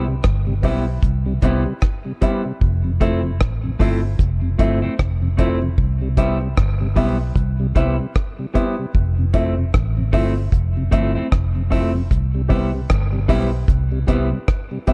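A deep, dry reggae drum kit sits up front with a tight kick, hi-hat and rim click, its rolled-off top roughened by vintage 12-bit sampler grit, while a round, foam-muted fingered electric bass anchors this sunny, uplifting roots reggae excerpt at 76 BPM in C major with a swung 16th feel. A clean, picked electric guitar with tape echo and a woody upright piano adding stabs through tube saturation move between Cmaj7 and Fmaj7, the piano entering at 0.6 seconds. A mellow tonewheel organ with chorus vibrato and slow rotary speaker hums in the background, all inside a small, lightly reverberant room with a dark production and lossy compression artefacts.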